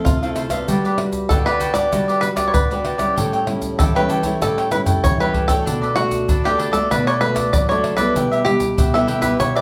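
Playful and joyful, this short samba and choro excerpt has a twangy, percussive fingerpicked banjo carrying the melody up front over crisp picked cavaquinho and a fresh-stringed classical nylon-string guitar, while close, dry egg shaker, tight surdo, pandeiro and tamborim drive the groove and break into a drum fill from 4.4 to 5.7 seconds, the band playing live together in a large, wet-sounding studio room.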